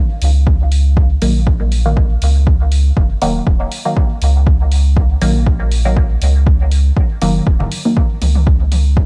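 A swung sixteenth-note groove in four drives this cavernous, hazy dub techno fragment, with a punchy, up-front electronic kick and dark, layered hi-hats re-recorded in a small room, while a deep, round sub bass pumps beneath on one sustained minor chord. Muted sawtooth-and-square chord stabs, plucked by a filter, drift through phaser, cassette tape colour, dub echo and sidechain pumping until 8.1 s, and overdriven electronic congas and toms with their own dub echo appear at 7.6 s. The dry, gritty hardware sound carries transformer saturation and tape grain throughout this brief cut from a longer piece.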